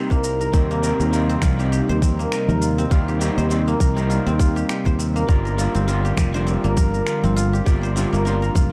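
Hypnotic and warm, this short organic downtempo excerpt in swung 4/4 sets silvery guzheng arpeggios played with fingerpicks and a twangy, slightly broken-up electric guitar through a small old amp, both carrying digital delay and the guitar also pumping against the kick, over a very quiet, warbling detuned analog pad, while a growly, punchy fretless bass with sidechain pumping sits up front beside a tight, tape-treated electronic kick, with roomy electronic shaker and finger snaps and a crisp, close darbuka played very quietly beneath, in a dark production with light reverb.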